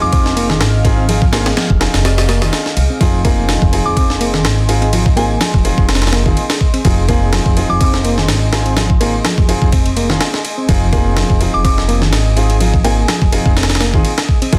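A swung breakbeat drives this playful, funky excerpt, its sampler-style kit sitting up front from 0.1 seconds with a thumpy kick, a high-tuned snare and ride cymbal, all compressed, pitched up and gritty with a tape-softened edge. Underneath, a woody pizzicato upright bass on steel strings holds the low end, while a reedy electric piano repeats a riff through its built-in speakers, lightly overdriven with fast tremolo, tube saturation and tape echo. A clear but boxy grand piano adds stabs with long sustain and its own echo, and a deep, moody analog pad of detuned sawtooth and triangle waves with a sub octave swells in slowly behind everything, carrying chorus, 12-bit sampler grit and sidechain pumping. A glassy, crystalline FM bell flickers in the background in short phrases, returning at 3.9 and 11.5 seconds with chorus, a small-speaker tone, sampler grit and tape echo. The dense, heavily limited master carries light reverb and a layer of vinyl crackle over one sustained chord.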